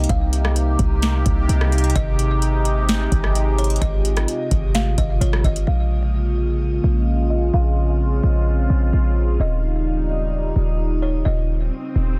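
Atmospheric cloud-rap with a spacious, melancholic mood, this short hip hop passage moves in a heavy half-time feel over a cycle of lush seventh and ninth chords. A sweeping, resonant pad of detuned sawtooth and wave-folded tones holds sustained chords throughout, its slow attack and long release shaped by chorus, phaser, sidechain pumping and a low-pass filter. Beneath it, a deep, boomy 808-style bass with a sine core and a faint noise layer sits up front, while a booming analog drum machine with a deep kick, crisp snare, rim click and metallic hats adds overdriven grit until it drops out at 5.7 seconds, when a filter sweep begins to reshape the sound. Floating above, a buzzing kalimba plays a bright melody of short, woody, hollow-box plucks, softened by a low-pass filter and trailed by delay. An electronic swell enters at 11.5 seconds to close the section, and the dry, dense, heavily limited mix keeps every part close and present.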